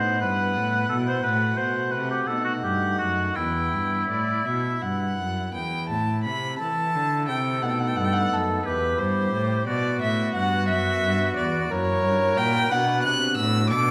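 A warm, expressive violin carries the melody in this radiant, flowing baroque-style sonata movement in E minor, its vibrato and portamento shaping a smooth top line that climbs as high as F#6. Set in a rubato 6/8 at roughly 54-60 BPM in dotted quarters, the excerpt is cut from a longer piece and runs about 13.9 seconds, with all four parts sounding throughout. A solo oboe with light vibrato supplies a classical-style second line, its tone both up front and roomy. Beneath them a pipe organ on a nasal cornet solo stop with tremulant fills in romantic-voiced accompaniment, while a single bowed cello gives the bass a rich, focused body with its own vibrato. The harmony moves from Em/G through B7 back to Em in the opening phrase, then at 5.5 seconds a new section turns toward the dominant, passing through F#7 to settle on Bm at 12.7 seconds, all set in the generous glow of a recital hall's reverb.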